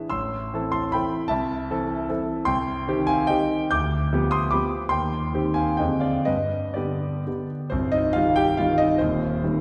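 This classical, romantic dance in 3/4 and C minor has a capricious, wistful mood, with dotted rhythms and a free rubato tempo between 116 and 166 BPM. A solo concert grand piano sounds intimate and natural, with deep bass and audible action noise, ranging from C1 to G6. A wet concert hall reverb places the listener further back in the room, and the harmony leans on a dominant G before settling on C minor at 7.7 seconds in this brief passage cut from a longer piece.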